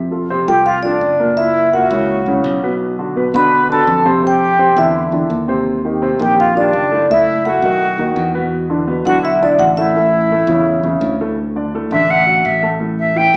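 An electric bass opens this sunny, sophisticated jazz excerpt in D major at 168 BPM, its bright, growly tone joined almost at once by a dark, mellow baby grand piano carrying the accompaniment. At 0.5 seconds a vibraphone takes the melody, metallic and ringing under medium mallets with a slow motor vibrato, sitting full and up front. A breathy silver concert flute enters at the same time with a second line, played in a straight, tongued tone. The harmony moves through colorful chords such as F#7, Eb69 and F#m7 before settling toward A and D. The vibraphone stops at 11.0 seconds, and from 11.4 seconds the flute takes a short, expressive solo to the close. The band sounds like a live group in one room, bathed in a large studio reverb yet heard as if through a small speaker.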